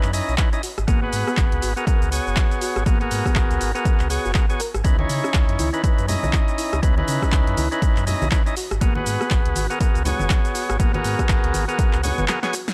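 An analog drum machine lays down a swung 4/4 groove at 121 BPM, its handclaps, hi-hat, rim click, shaker and snare carrying a short room on the snare, clap and hats, and a punchy, overdriven electronic kick joins up front at 0.4 seconds. This is a deep, late-night deep house cut from a longer piece, built on a C#m9 to G#m9 progression. A thick, gritty tonewheel organ plays stabs up front, with key click, vibrato, third harmonic percussion and tape echo, all under sidechain pumping. Beneath it, a sine-and-triangle sub bass with an octave holds sustained, fast-attack notes, also pumping. A soft, round pluck sits in the background with dark arpeggios, touched by subtle chorus and analog delay, while ringing acoustic congas with hard hands enter at 5.0 seconds in a small room. The whole recording has a dry, transformer-saturated hardware character under digital ambience, and it closes on a brief break and drum fill from 12.3 seconds.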